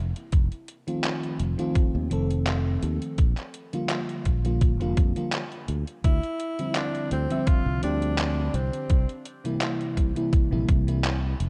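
Woozy and nostalgic, this vaporwave excerpt drifts over F7, Bb6, Dm11 and C7 with a growly, punchy fingered electric bass with tube saturation, a thumpy overdriven electronic kick, a detuned 8-bit drum machine's gritty handclaps and hi-hat under gated reverb, and a lush, dreamy FM electric piano with a soft pad layer shimmering through tremolo, subtle chorus and tape echo, until a breathy, close-miked tenor saxophone enters at 6.0 s with a jazz-style vibrato solo, all wrapped in light reverb and cassette-tape character.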